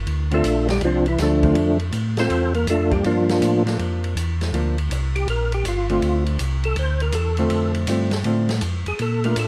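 A percussive tonewheel organ with fat third-harmonic percussion, key click and chorus vibrato through a slow rotary speaker takes the lead in this soulful, smoky soul jazz organ trio excerpt in D minor at 161 BPM with a swung feel, over a round, mellow organ bass line, a dark, clean hollow-body guitar, and an acoustic small-room drum kit with dark cymbals and a boomy kick, moving from Dm7 to Gm7 at 3.0 seconds and back to Dm7 at 6.0 seconds in a dark production with light reverb.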